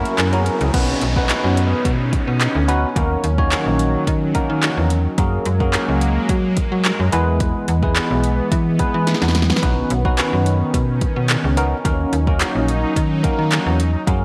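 A summery, carefree dance-pop excerpt in B major at 108 BPM, bathed in a moderate echo-chamber reverb, where a brief electronic riser opens onto bell-like tine electric piano with analog chorus, a detuned sawtooth pad of evolving, full-bodied chords, and a snappy FM bass with a metallic attack, all pumping against an up-front, overdriven deep house kit with a deep kick, punchy snare and metallic hats, which plays a fill at 9.1 seconds before a very quiet, close and dry group handclap enters at 10.2 seconds over chords moving from Badd9 through D#m7, F#add9 and E.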